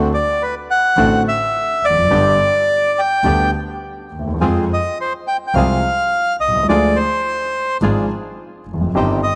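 A rubato 4/4 at 106 BPM gives this melancholic, sultry tango fragment its hesitant sway, moving through D7, G, Fm and Ddim. A reedy, close-miked bandoneon carries the melody up front from 0.1 seconds, while a second bandoneon adds dry stabs in the background. Beneath them, a concert grand piano accompanies with deep bass and audible action noise, a single bowed double bass plays sul tasto with light vibrato and an airy tone, and a moderate plate reverb adds space.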